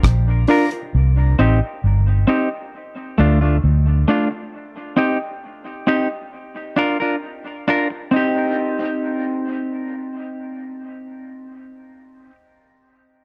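This meditative, deep dub reggae excerpt opens with a round, foam-muted electric bass up front and a dark, tight reggae drum kit of kick, hi-hat and rim click; the drums fall away by 0.9 seconds and the bass by 4.0 seconds. A clean, compressed semi-hollow electric guitar carries the accompaniment through spring reverb and dub echo until 12.4 seconds, while a reedy, worn, slightly out-of-tune electric piano adds a brief stab with fast tremolo and dub echo near the start. The sound is dry and close, like a 1970s studio recording.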